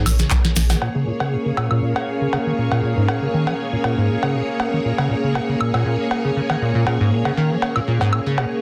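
Acid house at 119 BPM in Bb minor, trippy and raw, this excerpt opens on a booming analog drum machine fill of cowbell, handclaps, hi-hat, snare and woodblock, with a round sine sub bass and a grainy tube shaker heard only in the first second. A squelchy, resonant square-wave acid bass riff runs throughout under a filter sweep from 0.8 seconds, set against lush sawtooth string machine chords on a Bbm7, and an airy, breathy, detuned pad joins at 1.0 seconds. Sidechain pumping moves the strings, acid bass, sub and pad, with light reverb over a dense, heavily limited master.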